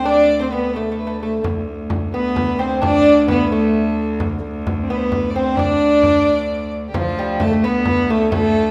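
A wet recital hall reverb surrounds this short medieval dance, cut from a longer piece, moving at 87 BPM in a straight 6/8 in D dorian with an ancient, driving mood. A bowed viola da gamba carries the melody up front, its gut-string tone reedy and biting with a light vibrato and a ringing, fretted sound. Beneath it, a second viola da gamba holds a low D drone with an airy bow, while a fiddle plays a smooth, even second line higher up. A fingerpicked lute with double gut strings adds a delicate second line in the background. A frame drum, close and dry, enters at 1.4 s and drives the dance along until 8.5 s, with a new section arriving at 7.0 s.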